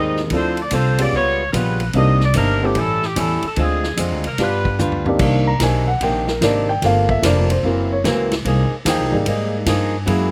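Dry, open-air sound with little reverb frames this brassy, sultry big band swing excerpt, where a bright, vintage saxophone section carries the melody with vibrato until 4.8 seconds over a boxy fingerpicked acoustic guitar with slapback echo, a polished grand piano, a woody upright bass up front and a drum kit with a punchy kick, whose fill leads into a piano solo from 5.2 seconds to the end.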